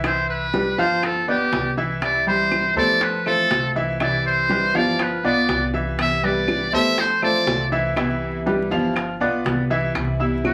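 A bright concert grand piano opens this sunny, danceable Cuban son and guajira cut at 121 BPM in C major, rolling arpeggios over a deep bass into a brilliant, present upper register, joined by a growly, thumpy pizzicato upright bass, round low-tuned bongos, and woody claves sitting in the background. A trumpet with a metal mute enters at 0.1 seconds and takes an up-front jazz-style solo, its buzzy, thin tone carrying vibrato and a punchy, forceful edge while sounding distant and roomy. At 2.0 seconds a picked acoustic archtop guitar joins with boxy accompaniment, the occasional finger squeak audible. The harmony cycles through Cmaj7, G7 and Fmaj7 in a straight 4/4 feel. A wet club reverb and a layer of vinyl crackle give the whole excerpt a vintage nightclub air, and the passage is cut from a longer piece.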